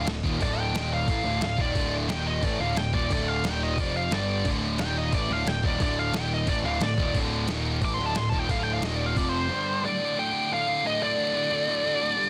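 Dark and aggressive, this heavy metal excerpt charges along at 178 BPM in a straight 4/4, centred on D phrygian. A high-gain lead guitar takes a distorted, up-front solo in its upper register, over a bright rhythm guitar playing a low riff, with a double-tracked high-gain guitar and a sludgy overdriven guitar filling out the same riff from the background. Underneath, a growly, round overdriven picked bass anchors the low end. A gritty, pitched-down sampler-style drum kit adds a thumpy kick, a medium-tuned snare and crashes. The harmony shuttles mostly between D5 and Eb5 power chords, with brief climbs through F5 and G5. At 9.8 s the bass, drums and background guitars have dropped away, leaving the lead and the front rhythm guitar to carry a short closing passage in a dry, dense and heavily limited mix.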